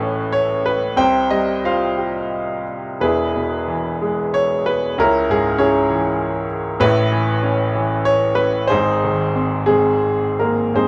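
Sunny and warm, this short excerpt of lyrical classical solo piano moves in a rubato 3/4, with a bright, brilliant baby grand sitting up front from 0.0 to 10.9 seconds and ranging from E1 to G5. Its natural tone and long sustain carry a flow of chords from Aadd9 through Csus4, E and Dbm, back to Aadd9 and on to Ab. A moderate small-room ambience surrounds the instrument, and the production itself leans dark.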